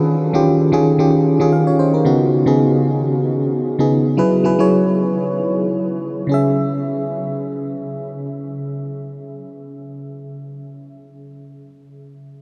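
A mellow, up-front FM electric piano with a fast attack, decaying tones and a noise layer plays suspended ninth chords through a drop in the first 2.1 seconds before settling on C# minor at 6.3 seconds, carrying this late-night, deep amapiano fragment in C# minor at 113 BPM with a light sixteenth-note swing, the whole mix soaked in a huge, dreamy ambient reverb.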